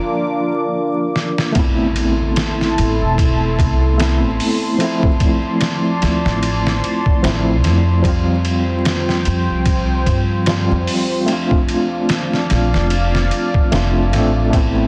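Smoky, cinematic trip hop at 74 BPM with a swung 16th feel, where a gritty overdriven tine electric piano with tremolo, sampler grit and tape echo and a deep, detuned analog pad with chorus open on a brief break, a muffled, pitched-down sampler drum kit with a thumpy kick enters at 1.2 s through a short fill, an electronic impact hits at 1.6 s, and a woody pizzicato upright bass joins at 2.8 s beneath chords moving from Amadd9 through Dm7 and Fsus2 to a rootless Bbmaj7, all in a dry, densely limited mix dusted with vinyl crackle.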